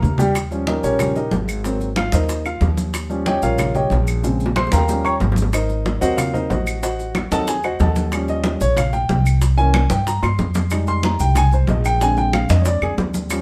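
An intimate upright piano, up front and warm with audible action noise, takes a solo from 0.4 s in this sunny, sophisticated Afro-Cuban jazz excerpt, cut from a longer piece and moving at a brisk 185 BPM in straight 4/4. The harmony sits in Eb mixolydian, circling Eb9 and Ab9 before passing through Adim7, C7b9, Fm7 and Bb9. Beneath it, a dark, thumpy upright bass with gut strings is plucked pizzicato and sits close in the mix. Bright, thin-skinned congas played with hard hands carry a vintage, band-limited tone, while low-tuned bongos sound round, compressed and saturated under soft hands. Woody claves sit in the background and grainy, mellow maracas add a small-room texture, with percussion fills around 4.2 s and 10.2 s, all held in a moderate studio reverb.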